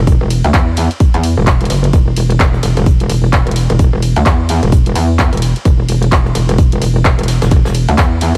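A metallic, FM-built wobble bass dominates this bouncy, aggressive bass house fragment at 129 BPM, sitting up front between E1 and E2 with tube saturation, chorus and sidechain pumping giving it a gritty, compressed bite. A punchy electronic kick drives it in 4/4 with a 60% swing on the 16ths, joined by a layered house kit of handclaps, bright hi-hats and ride cymbal. Far beneath, a very quiet jazz brush kit adds natural hi-hat and medium-tuned snare from a small room, running from 0.1 seconds to 8.3 seconds.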